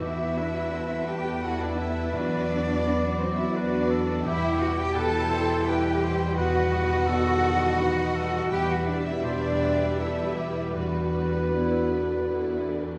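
A reverberant recital-hall acoustic, as in a church or concert hall, surrounds this sorrowful, longing cinematic passage, cut from a longer piece and lasting about 13 seconds. In a rubato 3/4, a rich violin section carries the expressive melody with vibrato and soft attacks. A second violin section, a pure, distant flute and a solo oboe in classical style weave second lines beneath it. Deeper in the background, a dark, mellow grand piano with long sustain and an intense, lush viola section supply accompaniment, while a French horn section holds soft-edged sustained chords. Close, smooth cellos and smooth double basses anchor the bass, and the harmony alternates Em with Bm/E and B/E before settling back on Em.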